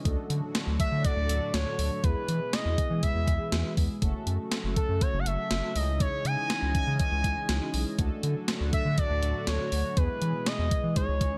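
An expressive sawtooth lead glides with portamento and vibrato from 0.8 seconds, carrying the melody up front through chorus and delay in this nocturnal, melancholic synth-pop excerpt. Beneath it, a gated 80s drum machine hits with a thumpy kick and gated-reverb snare, a round, deep analog bass anchors the low end, and dark, detuned synth brass with chorus and phaser sits alongside a smooth, slow-attack pad in the background. The chords move from D to E to F#m and C#madd9 before returning to D and E, and the dry sound keeps the tape-warm drums forward.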